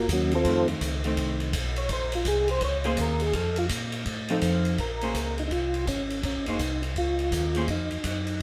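A live stone-room sound with moderate reverb frames this soulful, late-night soul jazz organ trio in Bb minor at 166 BPM with a swinging eighth-note feel. A mellow, flute-like percussive tonewheel organ with chorus vibrato and slow rotary speaker carries the melody over a clean, hollow-body archtop guitar's picked accompaniment. Beneath them, a piping tonewheel organ bass with key click takes a solo through the first 4.8 seconds, and an acoustic big-band drum kit with a punchy kick plays hi-hat, kick and ride. The harmony moves between F7 and Bbm9 in this short cut from a longer piece.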